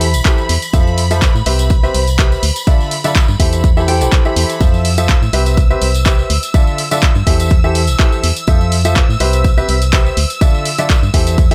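Piano house with a bittersweet, soulful mood, featuring a bright, woody, slightly detuned upright piano riff with digital delay, over a hollow, organ-like FM bass, shimmering vintage string-machine violin chords with ensemble chorus, all three pumping with the sidechain, plus tape-warm analog drum-machine handclaps and hi-hat, a background tambourine from 0.1 seconds and an up-front punchy electronic kick from 0.3 seconds, cycling through Am7, Fmaj7, Cmaj7 and Dmadd9 in a short cut from a longer piece.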